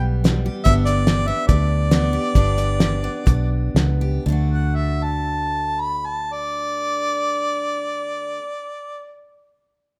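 Honky-tonk and classic country with an easygoing, sunny mood, heard in a short cut from a longer piece where a mellow harmonica takes a solo with light vibrato, soft attacks and scooped notes, while the tempo slows as the harmony moves from Em to G. Beneath it, a bright, full-bodied picked steel-string acoustic guitar and a round, punchy foam-muted electric bass carry the harmony, while a cloth-damped, thuddy drum kit with a fat snare and tight kick plays only until 3.9 seconds. The rough home-demo mix sits in a small room with light reverb, the gritty drums and dark bass placed up front before the music settles on D at 4.3 seconds.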